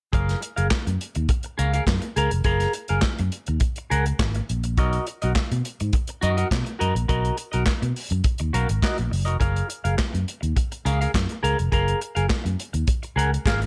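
Disco groove at 104 BPM in F# major, celebratory and glamorous, cut from a longer piece and moving through lush F#maj9 and Bmaj7 chords. A bright, clean semi-hollow electric guitar with phaser plays accompaniment up high, while a growly, amped fingered electric bass holds the low end. A soul drum kit with a tight kick, medium-tuned snare, hi-hat and handclaps sits in gated reverb, all captured with light studio ambience.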